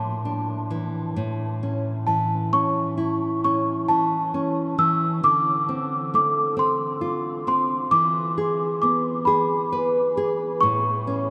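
Washed in a huge, echoing reverb that suggests a vast space, this gentle, dreamy children's lullaby in 6/8 at 44 BPM, cut from a longer piece, sets a bell-like, delicate small celesta melody up front over a fingerpicked classical nylon-string guitar accompaniment, finger squeaks audible, moving from Asus4 through A, Dm7 and E7 before settling back on A at 10.6 seconds.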